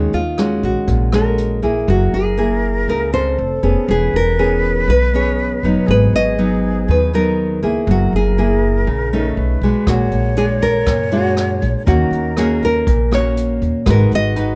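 Two fingerpicked classical nylon-string guitars, one carrying the melody and the other, up front, the chords, open this intimate, wistful bossa nova at 120 BPM over a woody pizzicato upright bass and a brushed drum kit with a boomy kick and rolled-off top that stops at 1.7 seconds and returns at 9.9 seconds, while a breathy, mellow silver concert flute with vibrato, a crisp attack and an unsteady tone enters low in the dark, dry mix at 1.9 seconds as a second line over chords such as Ebm11, F#9 and A#7alt.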